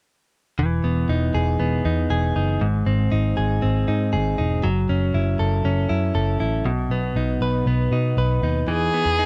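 A clean, direct-recorded electric guitar with a warbly pitch drift plays up-front arpeggios over a dark, round, foam-muted picked electric bass from 0.6 seconds, moving through a nostalgic, breezy jangly indie pop progression from Emaj7 to G#, F#m7 and B in a dry, close 1970s-style studio sound, before a rich, smooth bowed violin with vibrato enters on a single note at 8.7 seconds as the chords return to Emaj7 in this short excerpt.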